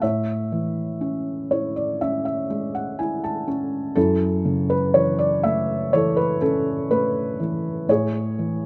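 A felt-muted upright piano sits up front, its mellow, intimate tone softened by thick felt as it plays alone through this dark, reflective classical fragment cut from a longer piece. At a slow 61 BPM in 4/4 with a rubato feel, it moves from Amaj7 to F#m7 and back to Amaj7, adding a fill between 1.0 and 4.0 seconds across a range from F#2 to A5. Close, detailed microphones and light reverb keep the sound near and personal, with the instrument tuned to A4 = 439 Hz.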